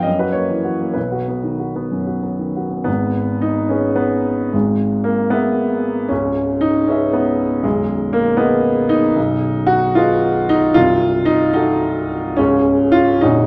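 An open-toned baby grand piano with long sustain sits up front in this hopeful romantic character piece, unfolding with rubato in 6/8 at roughly 59-82 BPM in G# minor and spanning A#0 to F#5, passing through a brief opening on F#7 and B before settling at 2.9 s into G#m, E/G#, C#m7 and G#m/B, then turning to Cdim7 and arriving on C# at 12.4 s, wrapped in the wet reverb of a large studio with a dark, warm production, as a passage cut from a longer piece.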